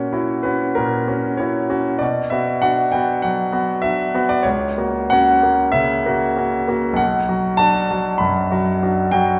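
Romantic classical character piece for solo piano, passionate and stormy in a flexible rubato, with a brilliant, up-front grand piano whose audible action noise and long sustain ring through a wet recital hall reverb, moving from an F#7 over A# through B minor and an F#7 over C# back to B minor in this short fragment cut from a longer work.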